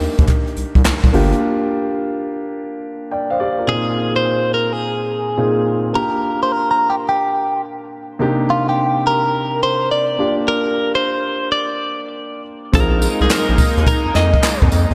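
Bouncy and upbeat, this excerpt of new jack swing R&B moves at 106 BPM in 4/4 with a 16th-note swing, anchored by a dark, mellow grand piano that plays throughout over chords such as Cm7, Gm7 and Bb7sus4. A round, deep analog bass and an airy brushed drum kit with a boomy kick, hi-hat, tambourine and handclaps open the track alongside a very quiet group handclap, then drop out for a break from 1.4 to 3.7 seconds, after which a compressed, clean, direct-recorded electric guitar takes the melody with phaser, slapback and tape echo. Bass and drums return at 12.7 seconds with a thick, warbling detuned unison pad with chorus, all set in a lush hall reverb that gives a big arena sound.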